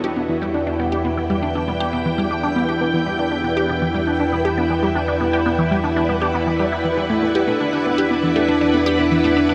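A squelchy, resonant blip pluck riff with phaser and tape echo sits up front in this cosmic, hypnotic stretch of sequencer-driven ambient space music, over lush vintage string machine chords shimmering with ensemble chorus, a nasal, evolving analog drone bass, and soft-mallet vibraphone arpeggios that ring in the background from 7.5 seconds, all soaked in a dreamy, huge reverb.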